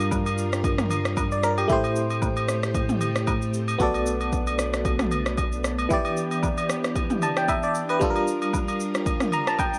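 A biting, barking FM electric piano sits up front in this hypnotic, late-night amapiano excerpt in E minor at 114 BPM, its percussive, decaying notes touched with chorus, tremolo and a noise layer, and it closes with a short fill at 9.1 seconds. Behind it, a vintage, organ-like ensemble string pad holds soft sustained chords through an ensemble chorus, pumping against the beat. The harmony moves through Gm7, Am7, Bm7 and Em7. A deep, sine-toned sub bass with a pitch-drop attack anchors the groove until it drops out at 5.9 seconds. The deep house drum kit is electronic and layered, with a punchy kick, rim click, shaker and toms, and its swung sixteenths sound re-recorded in a small room. Band-limited acoustic agogo bells and woodblock, joined by egg shaker and group handclap, add vintage colour, and the whole piece carries a dry, gritty hardware character with a digital ambience.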